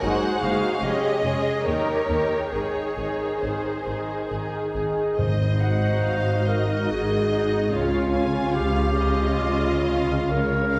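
A mellow clarinet enters at 4.3 seconds with a second line over veiled, con sordino strings, where two violin sections carry the melody and a counter-line above violas, cellos and up-front double basses, while soft-mallet timpani sound round in the background from 5.2 to 6.4 seconds, all in a lyrical, tender classical passage in Ab major, moving in rubato 3/4 at 65-77 BPM through the reverberant space of a church or concert hall.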